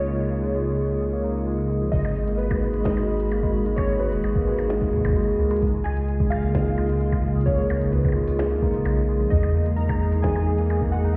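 IDM at 130 BPM in G# minor, this eerie, melancholic fragment of a longer piece opens on a hollow, flute-like pad, a tremolo-laden tine electric piano running tape-echoed arpeggios, a round analog bass up front, and a warbling lo-fi synth melody washed in chorus, delay and shimmer reverb. At 1.9 seconds a deep electronic kick and a glitchy kit of tiny snare, clicky hats, crash, percussion blips and digital delay come in as the chords move through G#m7, C#7 and Emaj7. The whole mix sounds muffled, as if heard through a wall, and sits in a stone room reverb.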